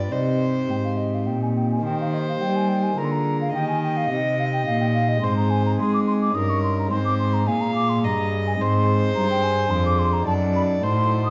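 A mellow, hollow concert flute with vibrato and a soft attack carries the melody from the outset, over a close, reedy gut-string violin line, a rich period-style cello bass and a smooth chamber organ principal stop with chiff, in a flowing, solemn baroque-style sonata movement in Eb major at 107 BPM in 3/4, heard as a cut from a longer piece, bathed in the wet reverb of a recital hall, and closing on an unsettled F#dim7 at 10.3 seconds.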